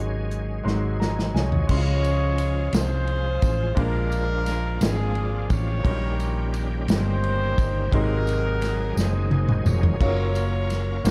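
A slow, uplifting gospel piece in 6/8 at 58 BPM in Db major opens on brilliant baby grand piano, a shouting, lightly overdriven tonewheel organ with slow rotary speaker and chorus vibrato, and a round, up-front hollow-body electric bass, with a roomy, distant soul drum kit entering at 0.3 seconds and filling alongside the piano. A smooth-topped, jazz-style horn section carries the melody from 1.4 seconds, and a jingly tambourine sits in the background from 2.0 seconds as the chords move from Dbmaj7 through Bb7, Eb7/Bb and Ab7 to Gbmaj7. The production is dark with light reverb, keeping the hopeful mood close and soulful.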